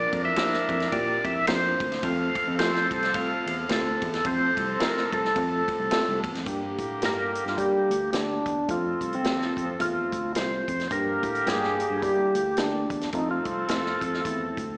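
Heard as a live gig through a venue's PA, with recital hall reverb and a small-speaker sound, this joyful, swinging 1960s-style soul cut from a longer piece has a warm feel. Up front, a percussive tonewheel organ carries the melody with key click, slow rotary speaker and slapback echo, while a dark, tight horn section and a very quiet, metallic vibraphone with hard mallets play second lines, the vibraphone dropping out at 6.2 s. A barky, reedy electric piano with fast tremolo and overdrive sits in the background, a worn, slightly out-of-tune tine electric piano plays the bass through a combo amp, and a punchy vintage drum kit keeps the beat as the organ steps into a solo at 6.5 s over Gm and F.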